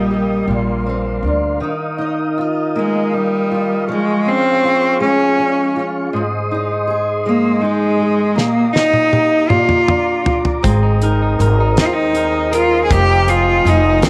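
Light reverb and a small-room ambience frame this tender, romantic six-eight pop ballad excerpt in Eb major at a slow 53 BPM, where a biting, intense bowed cello with vibrato carries the melody over a double-tracked, fingerpicked steel-string acoustic guitar and the soft, flute-like chords of a mellow tonewheel organ with chorus vibrato and key click, while a woody, thumpy pizzicato upright bass drops out at 1.6 seconds, a dry, damped 70s drum kit with a fat snare and tight kick enters with a fill at 8.4 seconds, and the bass returns at 10.6 seconds alongside a clean, compressed, direct-recorded electric guitar playing arpeggios.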